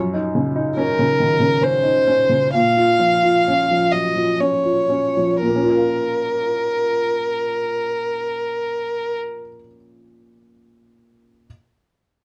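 This short cut from a longer neoclassical piece for piano and strings opens on a clear upright piano, its worn, woody and slightly detuned tone sitting up front with an open, short-sustained sound. A single bowed violin enters at 0.8 seconds to carry the melody, its tone warm and sung with vibrato and portamento. The mood is melancholic and reflective, set in Bb minor and 3/4 time with a rubato feel that hovers between 57 and 73 BPM and slows through the opening 5.4 seconds. The harmony moves from Ebm7/Gb to Bbm, the piano accompanying from low in the bass up to F5 while the violin stays in a narrow upper range. A moderate studio reverb and a dark production frame the pair, with the violin closing at 9.2 seconds and the piano continuing to 11.5 seconds.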